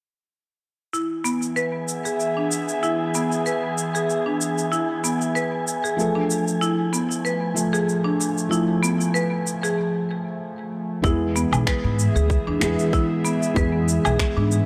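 A lightly swung 95 BPM groove in 4/4 carries this mystical, warm organic downtempo fragment: overdriven electronic cabasa, woodblock and finger snaps join bright, up-front marimba arpeggios played with hard mallets, delayed and under a filter sweep, from 0.9 s, while a breathy, warbling chorused pad with sidechain pumping and a wind-like tuned noise texture drift in soon after; a muted, intimate felt-muted upright piano with audible action noise adds delayed, pumping accompaniment from 6.0 s, and after a short break a growly pizzicato upright bass and a tight, overdriven electronic kick drum arrive at 11.0 s, inside a lush hall reverb.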